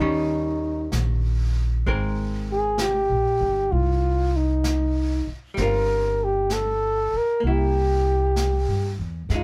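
A slow 4/4 swing at 64 BPM carries this wistful, smoky jazz fragment in C minor, cut from a longer piece, with a breathy, whispered flugelhorn up front singing the melody through vibrato, scooped notes and a soft attack. A dark, clean hollow-body archtop guitar comps beneath it, and a woody, thumpy upright bass on gut strings anchors the low end. Brushed drums join at 0.9 s over the light reverb of a band playing live in one room as the harmony moves from Eb7 through Abmaj9 and G7sus4 to C7.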